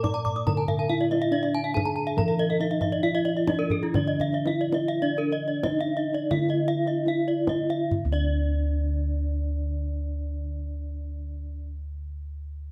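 In a straight 4/4 that ranges between 66 and 140 BPM, this ceremonial, shimmering excerpt of Balinese gamelan in D pelog slows down from 3.0 to 7.9 seconds before moving into a new section. A mellow bronze metallophone, struck with padded disc mallets, carries the melody in a soft, boxy small-room tone. Two brighter metallophones played with horn mallets spin arpeggios above it, and their paired tuning produces ringing, shimmering beats, with one part sounding close, dry and full. Underneath, bossed gongs hold the bass with a round, beating resonance placed up front. A deep kendang, played with soft hands, plays until 8.3 seconds. The ensemble sits in a moderate recital-hall reverb captured by close, detailed microphones.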